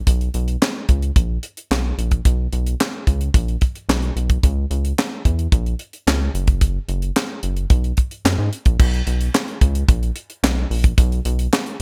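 A tight funk drum kit with a high-tuned snare, handclaps, hi-hat and a tight kick sits up front under gated reverb, driving this slick, danceable early-eighties boogie funk groove at 110 BPM in C# dorian alongside a rubbery, hollow square-wave bass with a fast filter pluck, in a dry mix cut from a longer piece that shifts to a new section at 8.8 seconds.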